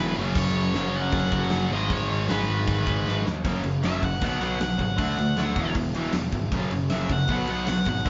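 A rowdy, upbeat punk rock excerpt cut from a longer piece, where a bright overdriven lead guitar takes a solo from 3.5 seconds over scooped distorted riffing, a dark sludgy guitar and a double-tracked high-gain guitar in the background that drops out at 3.3 seconds, a growly fuzz bass, and a big acoustic drum kit with a fat snare and punchy kick that enters at 0.4 seconds and plays a fill just before the solo, all captured as a band playing live in a stone room with moderate reverb and a dull top end.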